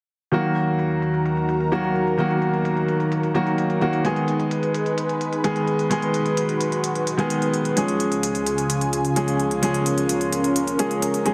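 A straight 4/4 pulse at 129 BPM drives this festival progressive house passage in Eb minor, cut from a longer piece, with a crisp, overdriven electronic hi-hat, layered and darkened by low-pass filtering, carrying a filter sweep throughout. An intimate, up-front grand piano, clear enough to reveal its action noise and trailed by dub echo, plays accompaniment over a thick pad of detuned sawtooth and square voices with a sub octave, slow attack and long release, colored by chorus and phaser. The chords move from Ebm to Abm at 4.0 seconds and Db at 7.8 seconds in a moderate hall reverb, and the heavily compressed, radio-style sound lends the music a powerful, emotional character.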